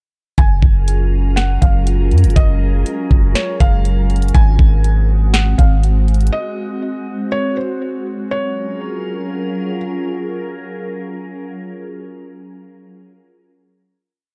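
A sparse half-time trap beat at 121 BPM drives this floating, blissful cloud-rap piece in Gb lydian, with a knocking kick, sharp snare and bright hats in fast rolls, while long, deep 808 sub-bass notes follow the kick with pitch slides until both stop at 6.3 seconds. Over them, a soft, felt-muted upright piano repeats a sparse looping melody through tape echo, its action noise audible, as a glassy FM pad holds ethereal chords with ensemble chorus, phaser and sidechain pumping, and a faint, breathy wind-like layer drifts in the background for a few seconds. The production is dark and dry, and the pad outlasts the piano on the closing Gbmaj9 chord, ending at 11.5 seconds.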